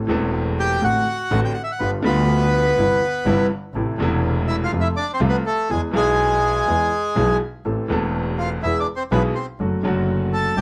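A reedy, up-front bandoneon carries the melody from 0.6 s in this passionate, sultry tango in A minor at 123 BPM with a rubato feel, over a smooth, vintage concert grand piano with deep bass in accompaniment and a biting, bowed double bass played with vibrato, the bandoneon touched by plate reverb and the whole group set in a moderate club ambience.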